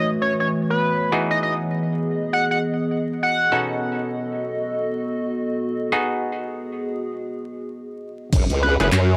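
An edgy, tearing sync lead with chorus and tape echo opens this playful, funky glitch hop excerpt at 100 BPM in G# phrygian, alongside a warbling, nostalgic pad that pumps against the sidechain and twangy, stringy clav stabs, all moving through F#m7, Emaj7, B7 and G#m7 with a swung 16th feel. At 8.3 seconds the pad drops out as a wobbling formant-sweep bass, a knocking electronic kick and a dubstep kit of crash, handclaps, rim click and low-pass-filtered bright hats arrive on an F#5 chord, with the lead returning briefly at 8.6 seconds. Vinyl crackle and light digital ambience give the whole cut a lo-fi, vintage sheen.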